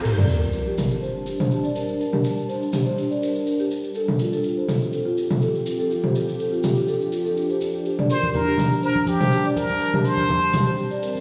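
This afro house piece is hypnotic and driving, with a light swing on the sixteenths, cut from a longer track. A mellow, round marimba played with soft mallets spins arpeggios through a low-pass filter and tape echo, while an ethereal, airy pad of detuned sawtooth and triangle tones holds sustained chords with a slow attack, long release, ensemble chorus and its own reverb. An overdriven, layered electronic deep house drum kit with crash cymbal and toms, re-recorded in a small room, drives the groove beside a grainy, distant cabasa, and an electronic sub drop rumbles under the opening impact until 2.0 s. Bright, close congas played with soft hands join at 8.0 s, and at 8.1 s a brilliant, forceful plunger-muted trumpet steps up front for a jazz-style solo with wah-wah, vibrato and tape echo. The whole mix carries a wet plate reverb and the stony echo of a big sound system playing in a bare room.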